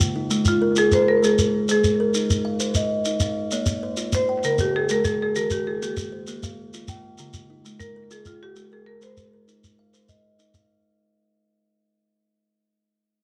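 A small room's ambience and light reverb surround this close, up-front recording, a short portion cut from a longer piece of southern African traditional music built on an mbira-style interlocking cycle. The groove moves at 131 BPM in a straight 12/8, counted in dotted quarters, and the mood is hypnotic and warm, with the whole passage fading out across its length. A kalimba plays ringing arpeggios throughout, its fingertip plucks mellow, woody and hollow-boxed, heard dry and full. A grainy shekere carries the percussion alongside it, sounding acoustic and live in the room. From 0.5 seconds a marimba struck with hard mallets takes the melody, its rosewood bars bright, percussive and mid-forward, with a tape echo trailing the notes. The harmony cycles through Db, Ab, Bbm, Db5, Eb and Bb5 before returning to Db and Ab.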